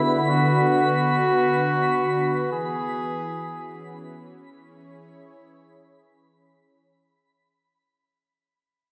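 Ambient in free time, this short excerpt cut from a longer piece feels spacious and serene. A solo flugelhorn carries the melody in a classical style, its tone warm yet distant and roomy, trailed by tape echo until it stops at 6.4 seconds. Beneath it, an analog synth pad holds sustained chords with a smooth, detuned sawtooth sound, soft attack and chorus, sitting up front while a filter sweeps across it and a moving notch colours its brightness. High above, a twinkling granular texture on B5 adds sparkling FM shimmer an octave up, with slow attack, long release and its own built-in reverb. The harmony shifts from Bm to C#m at 2.5 seconds, all set in a lush, wet hall reverb, and the whole passage fades out across its length.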